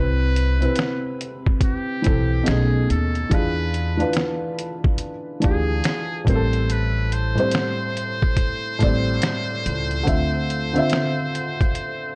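Swung sixteenths in 4/4 carry this cosy, dreamy lo-fi hip hop fragment: a muffled, pitched-down sampler-style kit with thumpy kick, snare, hi-hat and finger snaps enters at 0.4 seconds, a woody gut-string upright bass plucks beneath until 10.8 seconds, a felt-muted upright piano sits up front with intimate action noise and cassette-tape haze through a low-pass filter, and a buzzy, distant metal-muted trumpet sings a jazz-style melody with light vibrato in a small, gritty room over chords moving from Cmaj7 to Dm9.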